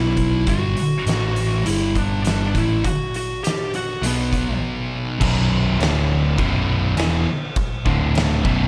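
A fuzz lead guitar opens this stoner and doom metal excerpt up front, its distorted melody trailed by tape echo as a pair of thick fuzz guitars grind out a riff in the background and an overdriven picked bass growls beneath them. The mood is sludgy and ominous, moving at 102 BPM in a straight 4/4 in B minor. An oversized, low-tuned acoustic drum kit sits up front with a punchy kick, fat snare, dark cymbals and hi-hat, its saturated, gritty sound filled out by a bright stone room that pumps around it. The lead melody stops at 4.6 seconds for a short break, and at 5.2 seconds a biting, double-tracked overdriven guitar joins with a riff of its own while the fuzz guitars, bass and drums carry on. Studio reverb adds depth to the mix.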